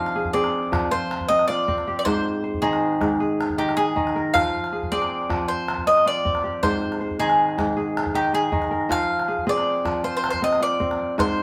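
West African traditional string and xylophone music in a flowing, reflective 12/8 at 105 BPM in F dorian, this excerpt sets a woody, double-stringed picked mandolin melody up front over ringing, mellow fingerpicked kora arpeggios, with a small calabash sitting distant in a large room, all played live together in one room under a wet studio reverb as the harmony alternates between Fm and Ab.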